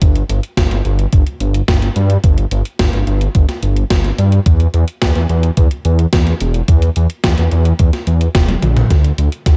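Dry and dark in its mix, this nocturnal, nostalgic synthwave fragment at 108 BPM in a straight 4/4 rides on a deep, rumbling detuned saw bass with tube saturation sitting up front from E1 to G2, a thumpy sampler-style electronic kick, and a gated 80s digital drum machine whose hi-hat, gated-reverb snare and toms carry a large-room character, with a drum fill at 8.5 seconds before it cuts off at 9.6 seconds.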